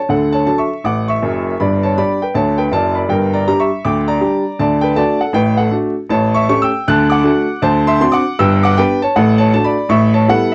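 A brisk swing at 159 BPM in 4/4 drives this stride piano excerpt, with the eighth notes lightly swung and a playful, buoyant mood throughout. A bright upright piano plays solo for the full 10.5 seconds, ranging from F#1 up to F#6, its tone brilliant and woody with long sustain that rings out. The harmony in D major moves from D to G and a darker G minor, returns home, then steps through A7, back to D, then D7 and G before settling on D/A and closing on an A9 at 9.9 seconds. The piano sits up front in a dry, close studio sound with a 1970s character, its polished tone framed by vinyl crackle. The result feels intimate and lively, a short cut from a longer piece.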